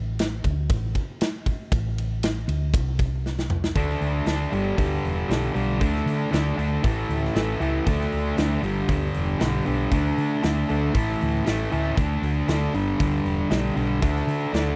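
Up front is a bright, fuzz-drenched guitar, double-tracked and compressed, that bursts in at 3.8 seconds with a picked riff cycling through D5, G and A chords in a raunchy, gritty groove. This is a short cut from a longer blues rock power trio number with a southern rock lean, played in a straight 4/4. A hollow-body short-scale electric bass, fingered and amped with a dark, round tone, opens the piece from the very start over a suspended A chord. A big acoustic rock kit with a punchy kick, medium-tuned snare and bright cymbals sits up front alongside it, working hi-hat, ride and toms, and a drum fill from 3.2 to 3.8 seconds launches the guitar's entrance. The sound is dry and close, with a natural 1970s studio character and little reverb.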